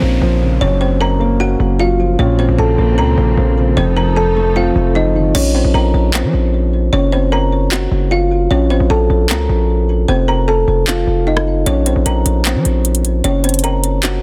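A half-time trap groove carries this melancholic, menacing hip hop excerpt, built on a punchy, saturated 808-style bass with a noise layer that sits up front alongside a woody, ringing kalimba melody with a thumbnail pluck, echoed by delay. A dark, boxy grand piano and a brief electronic downlifter open the passage, and lush, bowed strings with expressive vibrato enter at 2.2 seconds. At 5.3 seconds an electronic trap kit arrives with handclaps, rim clicks and a crash; its metallic hi-hats join at 11.7 seconds, all within a small room and a dense, heavily limited master.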